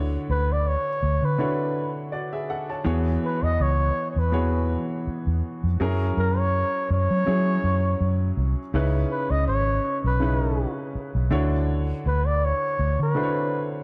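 A breathy flugelhorn carries the melody in this lush 1970s-style soul passage, entering at 0.3 seconds with a light vibrato and a jazz-tinged solo voice, its tone given a slapback echo. Beneath it, a warm baby grand piano plays a natural-sounding accompaniment, while a vintage muted fingered electric bass sits up front with a round, punchy, foam-muted tone thickened by tube saturation. The groove moves at an unhurried 82 BPM in 4/4 with a gentle swing on the sixteenths, and the mood is smooth and cinematic. The harmony drifts through Dmaj7, E6, F#7 and C#m7 before returning to Dmaj7, all within a single section cut from a longer piece. Light reverb and a small-room ambience frame a dark, warm production, with the bass stopping at 13.1 seconds just before the piano closes out at 13.8.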